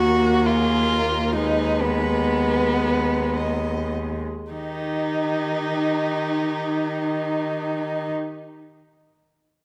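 In a rubato 3/4, moving between 48 and 71 BPM and slowing through the opening 4.5 seconds, this brief fragment of a slow romantic movement for string quartet carries an elegiac, melancholic mood. The first violin sings the melody from Gb4 to Eb5 with smooth, even vibrato, sitting in the background. The second violin plays its inner line further forward, expressive and sweetened by portamento. Beneath them, a dark viola gives close, intimate accompaniment with light vibrato, soft attacks and an airy bow, while a rich, even cello anchors the bass from Eb2 to Eb3 near the front. The harmony moves from Ebm to Abm over an Eb bass, then brightens onto Eb major at 4.5 seconds, where a new passage begins. The quartet sounds bathed in a wet scoring-stage reverb with a 1.7-second tail.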